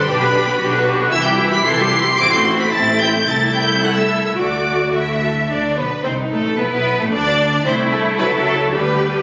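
Lively and graceful, this short fragment of a quick classical-period movement for string orchestra in 2/4 sets a smooth, close violin section on the melody over a lush, distant second violin line, with a clear, up-front viola section carrying the accompaniment, an expressive cello section on the bass and a full-bodied double bass section joining it at 0.1 s, every part bowed with vibrato and bathed in the long, wet reverb of a scoring stage, as heard through a phone in the room.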